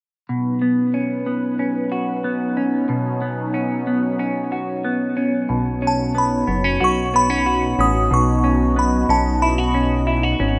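At 0.3 s a dark, clean semi-hollow electric guitar begins playing fingered arpeggios on a Badd9 chord, its hollow-body tone softened by analog chorus and delay. Beneath it a thick, detuned unison pad holds sustained chords, its soft attack and chorus adding a lush haze that sits further back in the mix. This is a blissful, floating dream pop piece cut from a longer work, moving at a straight 92 BPM in 4/4 and in B major. At 5.5 s a glossy, retro synth bass arrives with a fast, plucked attack, a mellow, chorused tone and an up-front presence, holding the low register. From 5.9 s a crystalline FM bell melody rings out high above, bright and warbling, with quick decays trailed by chorus and delay. A moderate studio reverb surrounds the parts, though the overall mix has the rough feel of a home demo.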